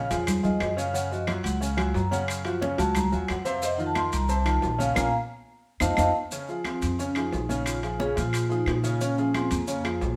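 A soft-mallet vibraphone, airy and ringing with a medium motor vibrato, opens this driving, fiery Afro-Cuban jazz excerpt alongside a clear, up-front baby grand piano and a woody pizzicato upright bass, with congas, maracas, timbales and claves joining almost at once. The vibraphone solos through the first 6.3 seconds, the band hitting an accent from 5.0 seconds before the music moves into a new section. High-tuned congas struck with hard hands and dry claves sit in the background beside grainy maracas and vintage metal-shell timbales, the group playing live together in a moderate stone room.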